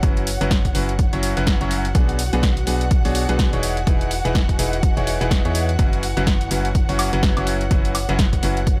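Uplifting and feel-good, this short piano house excerpt moves at 125 BPM in 4/4 with a 59% swing on the sixteenths, cut from a longer piece. A bright, brilliant grand piano carries the riff through digital delay, riding the sidechain pumping shared by the strings, bass and pad over a progression of F#7sus4, Bm6 and Emaj7. Underneath, a hollow, organ-like FM bass with a fast attack and decaying notes adds tube-saturated weight, while an overdriven electronic kick punches hard at the front of the mix. A punchy analog drum machine supplies overdriven hi-hat, snare and woodblock, and both drum parts have the sound of being re-recorded in a large room. Deep in the background, a dark studio string section holds sustained chords with vibrato and portamento alongside a warbly, nostalgic lo-fi pad with chorus and built-in reverb, all set in a digital ambience.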